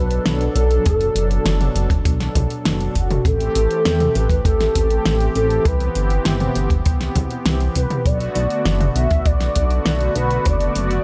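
Set in a digital ambience, this moody, driving synthwave passage, cut from a longer piece, moves at 100 BPM in a straight 4/4 within B phrygian. An expressive synth lead carries the melody between F#4 and E5, its smooth, mellow sawtooth-and-triangle tone softened by vibrato, ensemble chorus, cassette-tape character and digital delay. Beneath it, a brassy analog pad holds bold, detuned sawtooth chords with a filter sweep, tremolo and sidechain pumping, tracing Bm7, Am7, Cmaj7 and back to Bm7. The chorused synth bass sits up front and dark, a glossy retro blend of pulse, sawtooth and triangle waves with ring modulation, wave-folding and a filter pluck with a fast attack, also pumping against the sidechain. A produced, layered pop kit enters at 0.1 seconds with a fat snare, warm hats and toms re-recorded in a small room, while a dry, punchy acoustic kick joins at 0.9 seconds and drops out at 10.6 seconds.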